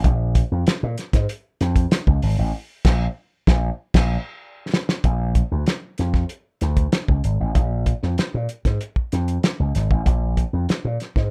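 A slap bass run through an envelope filter and a cloth-damped, thuddy drum kit start together on this gritty funk excerpt, cut from a longer piece, moving at 96 BPM in Bb mixolydian. The bass sounds bright, amped and punchy, while the kit brings a fat snare, tight kick, dark cymbals and a rolled-off top, both parts sitting up front in a rough home demo mix with little reverb. The band hits accents from 2.5 to 5.0 seconds, with a drum fill starting at 3.8 seconds that leads into a new section at 5.0 seconds.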